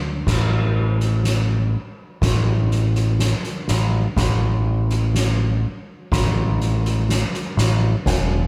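Post-rock with a soaring, hopeful mood, this short excerpt moves at a slow 62 BPM in a straight 4/4, tuned to A4 = 438 Hz. A growling picked electric bass opens the passage at 0.0 seconds, sitting low between E1 and D2, its bright, overdriven tone coming across direct and amped and placed up front. The soft-mallet drum kit enters at 0.3 seconds, also up front, with a boomy kick, a fat snare and dark cymbals including a crash, all struck with soft mallets for a natural, acoustic hall sound. The bass sits a little louder than the drums. The band plays live together in one room with a light reverb, and the passage is cut from a longer piece, ending at 8.5 seconds.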